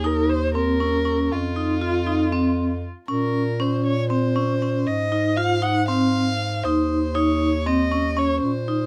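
Metallic, ringing vibraphone, struck with medium hard mallets and shimmering with a medium motor vibrato, carries the arpeggios from the very start of this short cut from a longer contemporary chamber piece. The mood is urgent and restless, driven by an uneven 7/8 metre counted at 236 BPM in eighths with a straight feel, and the players are tuned to A4 = 441 Hz. Up front, a single dark violin sings the melody with a soft attack, expressive vibrato, portamento and a smooth top, bowed across a range from F4 to Gb5. Beneath it, a mellow bass clarinet in a classical style plays the bass line in its low register, also placed up front. The harmony moves from Eb5 and F5 to Bbmadd9 at 3.1 seconds, then Ab and Cm/Eb, and all three parts play together for nearly the whole 8.9 seconds, the vibraphone stopping at 8.8. Close, detailed microphones and little reverb keep the sound intimate and dry.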